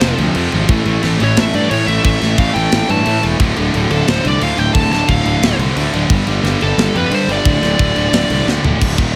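Heavy and aggressive, this brief heavy metal excerpt rides a half-time feel, with a dark, high-gain lead guitar carrying the melody through distortion and delay. Beneath it, two bright, picked high-gain rhythm guitars (one sitting in the background) and a quiet, double-tracked crunchy overdriven guitar drive the riff, while a growly, fuzzed electric bass pushes up front. A tight acoustic drum kit with a big-room sound, bright cymbals and a tight kick anchors everything, closing on a short fill at 8.5 seconds in a dry mix.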